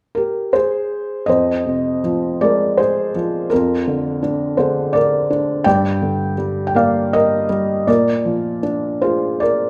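A felt-muted upright piano, soft and intimate with its action noise audible up front in a light reverb, carries this melancholic, reflective classical fragment alone, pulling at an uneven rubato in three-time through harmonies that open on Gmadd11, settle onto Fm at 1.3 seconds, and pass through Bb/F and Gm before arriving on Bb.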